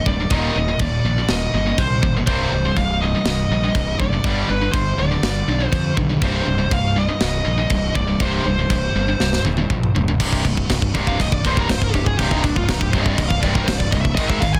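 Dry, dense and heavily limited, this relentless, epic heavy metal excerpt sets a dark high-gain lead guitar over a bright, double-tracked distorted rhythm riff, a growly fuzz-overdriven fingered bass and an up-front, tight acoustic drum kit with a rolled-off top, moving through a half-time passage that runs from Eb through Cm and G before a drum fill at 9.2 seconds hands over to a lead guitar solo on a C power chord at 10.2 seconds.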